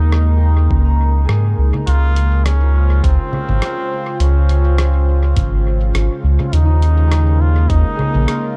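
This ambient dub piece, cut from a longer work, moves at 103 BPM in 4/4 with a gentle 16th-note swing, and its mood is spacious and peaceful. A trombone with a straight mute carries the solo melody in a nasal, brilliant, classically styled voice with light vibrato and a soft attack, its phrases trailed by dub echo. Beneath it, a smooth, detuned analog pad holds slow-attack chords thickened by chorus, while a fingerpicked concert harp rings out arpeggios in the background, also sent through dub echo. A round, deep analog bass sits up front with tube saturation, joined by a lo-fi, pitched-down kit of congas, hi-hat and rim click in a small room with dub echo, and a thumpy, muffled electronic kick enters in the background at 0.7 seconds. The harmony rests on Eb7sus4, shifts to Dbmaj7 at 1.9 seconds and returns to Eb7sus4 at 6.5 seconds, all within a dark, warm, close-sounding production.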